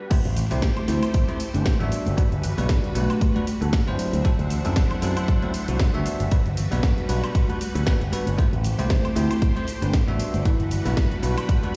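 Feel-good and groovy, this nu-disco excerpt rides a swung drop built on a punchy, up-front electronic kick, a house drum kit with a cracking snare, hi-hat, shaker, woodblock and crash, and very quiet acoustic tambourine and congas, all sounding as if played through a big sound system in a bare stone room. A picked electric bass with an envelope filter sits bright and forward, while a bell-like tine electric piano with tape echo adds accompaniment and a lush, vintage string machine with ensemble chorus holds sustained Gmaj7 and D9 chords, both pumping against the kick. A soft, round, octave-layered synth lead with chorus, phaser and vibrato floats in the background from 0.9 seconds and returns at 9.2 seconds.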